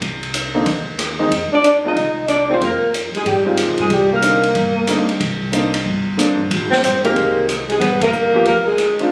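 A brisk 185 BPM swing in 4/4 drives this moody, late-night fragment of small-group jazz in C minor, cut from a longer piece. Upright bass and a distant, roomy drum kit start together: the pizzicato bass is woody and growly, and the kit brings dark cymbals, hi-hat, ride, rim click, a medium-tuned snare and a punchy kick. A warm baby grand piano enters as accompaniment at 0.5 s with a natural, up-front tone. From 1.5 s a breathy tenor saxophone adds an intimate, whispered second line full of vibrato and scooped notes, and from 1.6 s a clean, picked hollow-body electric guitar carries the melody just above it. The chords move from Cm through Fm7, Cm9 and Abmaj7 to a tense G7#9, capped by a band accent at 8.0 s, all captured on a phone in the room with moderate club reverb.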